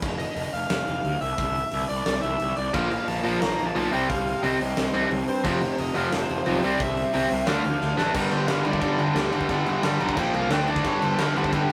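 Aggressive and urgent, this cut from a longer punk rock piece in G minor drives at 178 BPM in 4/4, opening in a half-time feel over a growly, fuzz-laden picked bass and a big acoustic kit with a fat snare, punchy kick, crash and hi-hat ringing in a stone-room sound. A smooth, warm overdriven lead guitar carries the melody from 0.2 seconds, and at 2.7 seconds three picked rhythm guitars crash in with the riff: a tight distorted one up front, a raw double-tracked garage guitar and another distorted guitar further back. A drum fill launches the full-time second section at 8.1 seconds, moving through G5, Bb5 and D5 power chords, all captured as a rough rehearsal-room recording with light reverb.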